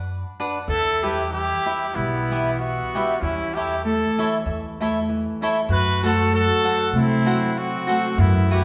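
Mexican folk mariachi in E minor at 97 BPM with a lightly swung, rubato feel, this passionate, dramatic fragment opens on a woody, growly pizzicato upright bass up front, joined at 0.4 s by a bright, crisp picked cavaquinho and at 0.7 s by a clear, classical-style trumpet melody, a distant vibrato trumpet second line in the background and ringing fingerpicked Celtic harp arpeggios, all bathed in a church-like recital hall reverb as the chords move from Bm through Em and A/E to F#dim.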